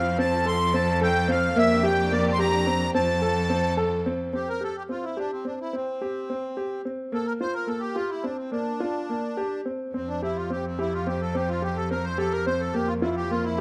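Contemporary instrumental chamber music in an uneven 5/8 meter, this excerpt from a longer piece moves at 214 BPM in eighths with a straight feel in F major, and its mood is hopeful and shimmering. A reedy, sweet accordion carries the melody up front throughout, its light tremolo tuning adding a gentle glimmer, while a grand piano plays arpeggios with an intimate, boxy tone, short sustain and audible action noise. At the opening, a lush, woody string section holds sustained chords in the background and a clear, smooth bowed cello anchors the bass with light vibrato, both dropping out at 4.3 seconds as the passage turns toward C5 and Gm7. The cello returns at 9.9 seconds on an Fsus2 chord, settling under the accordion and piano as the harmony moves to Gm7/F. Light reverb and close, detailed microphones give the recording an intimate sense of presence.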